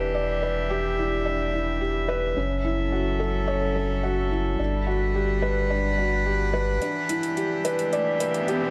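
Hypnotic and melancholic, this piano and strings electronica excerpt moves at 108 BPM in E dorian, with a felt-muted upright piano repeating a dark, intimate riff through digital delay over sustained, floating chords from an up-front string quartet bowed sul tasto, while a round sine sub bass holds the low end. The chords pass from Em7 through F#m7 and Gmaj7 before returning to Em7 at 6.8 seconds, where a build-up begins and overdriven, metallic electronic hi-hats enter. A background riser joins at 7.6 seconds, all within light reverb and studio ambience.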